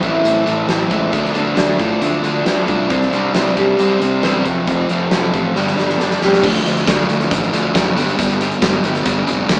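Cathartic and dark, this quiet-loud alternative rock excerpt drives at 136 BPM in a straight 4/4, moving from Am through Dm, Csus2, Fadd9 and Gadd9 before settling on Dm and G. A crunchy, up-front overdriven guitar riff and a growly, fuzz-soaked fingered bass run throughout, joined by a sludgy distorted guitar riff and a boxy acoustic archtop picking arpeggios in the background until both drop out at 6.4 seconds. A big, punchy rock kit with bright cymbals plays a fill from 5.6 seconds into the second section, all captured as a band playing live in a stone room with a small-speaker character.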